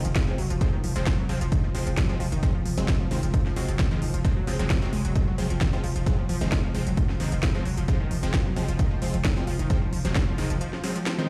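This excerpt from a longer driving peak-time techno track opens straight away with a lush, detuned sawtooth unison pluck riff sitting between Eb3 and Ab3, roughened by overdrive and trailed by delay, alongside punchy supersaw stabs spanning F3 to C4 whose moving notch and digital delay add motion. A growling, buzzy 808-style bass holds F1 under tube saturation and a low-pass filter, while a techno drum kit brings a cracking snare and smooth hats. The punchy electronic kick arrives at 0.2 seconds and sits up front, and the pluck, stabs and bass all pump with sidechain compression. At 132 BPM in straight 4/4, the piece stays on an F minor chord in F phrygian, intense and relentless throughout. Tape-warm, re-recorded drums and a large studio reverb give the sense of a big sound system filling a bare room, and the bass drops away at 10.6 seconds as a brief break takes hold before the close at 11.3 seconds.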